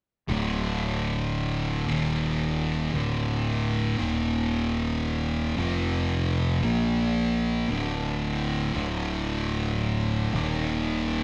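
In a slow, straight 4/4 pulse, this hypnotic, ominous metal excerpt from a longer piece sets a thick, distorted fuzz guitar riff up front, joined by a darker picked guitar riff sitting in the background, over a bright, overdriven fingered electric bass. All three play from 0.3 s across power chords moving between D5, Eb5, F5 and Bb5, captured as a band playing live in one large studio room with moderate reverb.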